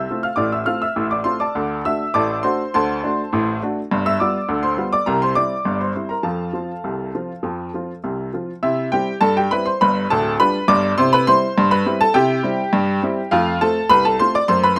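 A bright, slightly detuned upright piano opens this cheerful, jaunty ragtime fragment on its own, playing at 102 BPM in a straight 2/4. It stays the only instrument throughout, ranging from deep bass notes down at D1 up to sparkling treble at F6. The first stretch sits in F major, moving through D7, G7 and C7 before settling back on F, and at 8.6 seconds the music shifts into C major for a second section built around C and G7 before landing on F at 13.3 seconds. The instrument sounds worn and woody, with audible action noise and long sustain, and it sits up front and intimate in the sound. Light reverb surrounds it in a rough home demo mix, and the recording is cut from a longer piece, stopping at 14.8 seconds.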